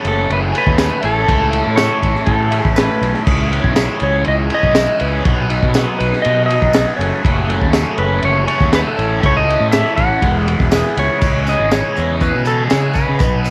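A dark, trippy slice of psychedelic rock, cut from a longer piece, opens with a fuzz-laden fingered electric bass and a biting, double-tracked overdriven guitar riff colored by phaser, both sitting up front, alongside a crunchy breakbeat drum kit, all over a very quiet, buzzy vintage combo organ holding sustained chords. Almost at once a clean, twangy lap steel takes the melody, using slide and volume swells with a slapback echo. A jingly, bright tambourine joins at 0.8 s in the background of a live room. The kit sounds like a small room and smooth, with dark cymbals, a high-tuned snare, a punchy kick and a rolled-off top, while the bass adds its own punchy grit beneath the guitar. The harmony circles through chords like F#madd9, A, C#madd9, B6 and Eadd9 before a new section begins at 11.2 s on C#madd9, all under a light studio reverb.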